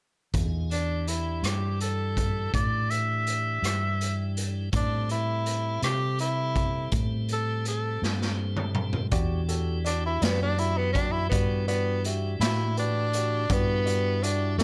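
Mournful and soulful, this slow 12/8 blues in E minor at 55 BPM, cut from a longer piece, moves from Em7 to Am7 as a raspy, growling tenor saxophone with slapback echo carries the melody over piping tonewheel organ chords through a slow rotary speaker and light overdrive. Up front, a round, dark fingered electric bass and a gritty, saturated garage drum kit with a boomy kick fill a small, pumping room. A drum fill at 8.0 seconds leads into the saxophone's solo at 9.1 seconds, where a woody upright piano enters in the background.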